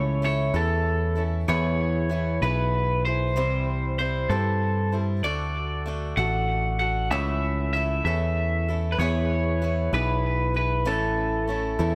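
Folk rock with a heartland rock lean, this short, jangly and nostalgic cut moves at 64 BPM in a straight-feeling 6/8 in A major. An electric guitar through a small old amp carries the melody, its bright, twangy, slightly broken-up tone sitting up front with a compressed edge and a dub echo trailing behind it. Underneath, a picked swing-style acoustic guitar provides a boxy accompaniment, also washed in dub echo. A picked electric bass, direct and amped, holds the low end up front with a warm weight. The harmony travels from A/C# through E, C and D, returns to A/C# and E, and settles on A at 10.9 seconds. Studio reverb gives the whole mix an echo-heavy character across its 11.9 seconds.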